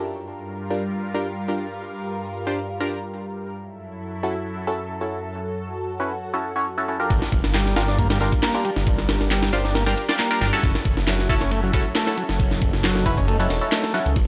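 Dry, gritty hardware sound with light reverb frames this funky breakbeat cut from a longer piece, moving at 136 BPM in a straight 4/4. It opens on a lush, detuned unison pad holding sustained chords with chorus, phaser and sidechain pumping, while a nasal, band-passed chord stab sits up front, its ring-modulated bite roughened by vintage 12-bit sampler grit and analog delay. The harmony moves between Gm7 and F#m7 throughout. At 7.1 seconds the drop arrives: a compressed, sampler-style breakbeat kit with a thumpy kick, high-tuned snare, hi-hat and ride cymbal lands up front, joined by an electronic shaker and handclaps under a low-pass filter, plus a swirling, thick detuned saw bass run through a phaser. A buzzy combo organ riff enters at 7.5 seconds, its vintage tone given tube saturation and analog delay.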